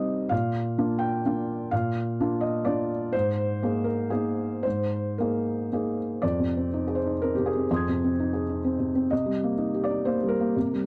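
A dry, close 1970s-style studio sound with light reverb frames this brief cut from a longer neoclassical minimalist piece, where a solo felt-muted upright piano, soft and mellow with audible action noise up front, moves in rubato 3/4 at 112-132 BPM through Bb, Absus2, Fm7 and Cm7 in an intimate, melancholic mood.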